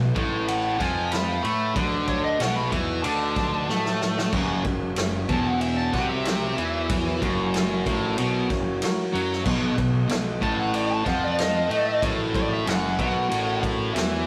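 Blues rock power trio with a southern rock edge, this gritty, raunchy excerpt moves at 94 BPM in a straight 4/4 in B mixolydian, with a sludgy, double-tracked distorted guitar riff up front over a growly fuzz bass and a punchy vintage drum kit with dark cymbals and a fill at 3.7 seconds. A biting overdriven lead guitar plays a solo line high above, while a very quiet tonewheel organ holds clean sustained chords through a slow rotary speaker with audible key click. The chords move between B7 and F#7, and the rough rehearsal-room sound carries a moderate studio ambience.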